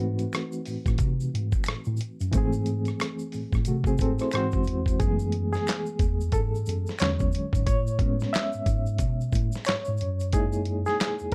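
A swung 16th-note groove at 90 BPM in 4/4 drives this soulful, late-night neo-soul R&B excerpt, where a gritty, compressed sampler-style drum kit with a thumpy kick, medium-tuned snare, rim click, hi-hat and handclaps sits up front beside a faint small-room tube shaker and finger snaps, a mellow tine electric piano carries the bass line, and a barky, reedy electric piano with fast tremolo plays the accompaniment over chords such as G#7b9b13 and Amaj9 before taking a solo from 5.0 s, the whole mix set in a dark production with light reverb.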